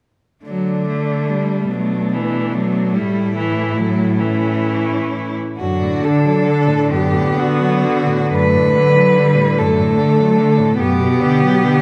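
A slow, rubato 12/8 pulse of about 41-51 BPM in dotted quarters carries this tender classical passage for cello ensemble in D major, cut from a longer piece. A rich, smooth cello sings the melody in the upper register, bowed with vibrato and set up front, while a clear, even cello shapes the accompaniment beneath it. The two remaining cellos share a warm, expressive character with portamento: one plays a second line from a more distant position, and the other plays the bass line up front with a soft attack. All four cellos enter together within the first half second. Around 5.6 s the music moves into a new phrase, and the harmony passes from D through A7 to D/F# and Bm/F#. A moderate recital hall reverb surrounds the ensemble and gives the bowed lines a gentle glow.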